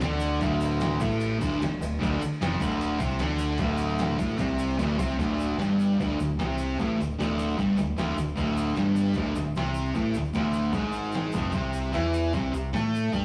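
A bright, double-tracked fuzz guitar riff sits up front in this swaggering, rowdy garage rock excerpt at 151 BPM, driven by a growling, punchy overdriven fingered bass and a gritty, pitched-down sampler-style drum kit with a thumpy kick in the background, plus a faint grainy tube shaker, all in a rough rehearsal-room recording with stone room reverb, where a drum fill at 4.8 seconds leads from D5 power chords into a second section that shifts to C5 at 11.5 seconds.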